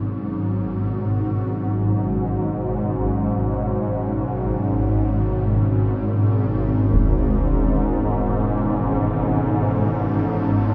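Bathed in a huge ambient reverb, this ominous dark ambient drone sets a swarming, warbling, detuned sine drone up front beneath a bright, resonant sawtooth pad with chorus holding sustained chords, while a single low-pass-filtered concert bass drum hit lands at 6.9 seconds as the harmony shifts.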